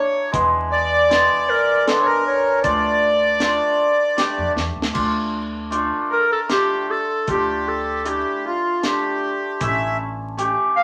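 Soulful and bittersweet, this klezmer fragment in three, cut from a longer piece, sets a smooth-topped, classical-style clarinet melody up front beside a reedy, slowly beating accordion second line, while a shimmering, ringing hammered dulcimer accompanies. A dark, woody pizzicato upright bass and a dry, deep reggae drum kit with a high-tuned snare and tight kick sit beneath, moving from E7 to Dm and closing on A. A drum fill at 4.6 s leads into the clarinet solo at 5.0 s, all wrapped in a wet club reverb with a layer of vinyl crackle.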